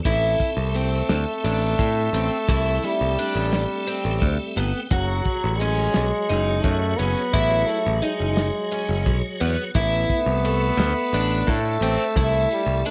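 A tonewheel organ and a clear trombone open this tense, intricate stretch of progressive band music, and twelve-string guitar, bass, drums and shaker join almost at once. The trombone carries a second line in its low register, sounding distant and roomy, while the organ supplies accompaniment with light overdrive, chorus vibrato, key click and a slow rotary speaker, adding a short fill at 3.9 seconds. The picked twelve-string spins shimmering, octave-doubled arpeggios with fresh strings. A bright, growly electric bass sits up front against a dry, dark soul drum kit with a tight kick and medium-tuned snare, and a grainy tube shaker stays very quiet in the background. Set in 7/8 with a straight feel, the harmony moves from Am to F#madd9 at 4.9 seconds and back to Am at 9.8 seconds, all under light studio reverb, as this piece cut from a longer work runs to about 12.9 seconds.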